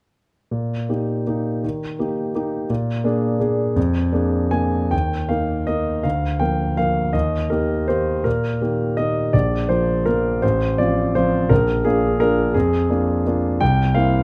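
A lilting three-beat waltz pulse, stretched with rubato, carries this short fragment of a classical piano piece, playful and elegant in mood. A solo concert grand sits up front with an intimate, vintage character, deep bass, smooth long sustain and audible action noise, captured by close, detailed microphones within a moderate large-studio reverb. A new section begins at 4.9 seconds, and the harmony arrives on a C7 chord at 13.6 seconds as the fragment is cut off.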